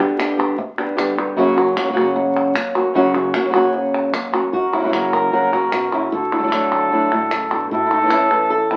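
Two fingerpicked flamenco guitars and crisp palmas hand claps open this short, fiery flamenco passage at 151 BPM in a straight 4/4. One acoustic guitar carries the melody while the other plays stabs, both sitting up front with a warm tone, and the stab part adds audible finger squeak. The claps sound as though caught in a live room, keeping a passionate drive under the chords as they move from G to F# and later through Dadd9 to A. At 4.5 seconds a mellow wooden flute enters up front with a second line, its airy, straight tone, soft attack and rolled-off highs contrasting with the warm guitars. The whole passage carries a wet studio reverb and the crackle of a very old 78 rpm record, giving it a vintage, dusty character before it cuts off at 8.8 seconds as part of a longer piece.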